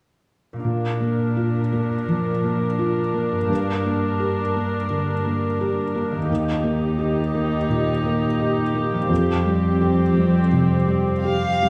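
A rubato pulse of 85 BPM in 4/4 carries this tender, moving cinematic film score in Bb major, cut from a longer piece. A felt-muted upright piano sits up front with a dark, intimate tone and audible action noise, playing accompaniment alongside a viola section bowed sul tasto with a pure, floating sound. Beneath them, a cello section holds the bass with light vibrato and a close, soft attack, while a mellow concert harp rings out fingerpicked arpeggios in the background from 0.5 seconds. The harmony moves from Bb to Gm, then Eb, and settles on Fsus2. Only at 11.2 seconds does a violin section arrive with a smooth-topped F5 melody note, all within a moderate concert hall reverb.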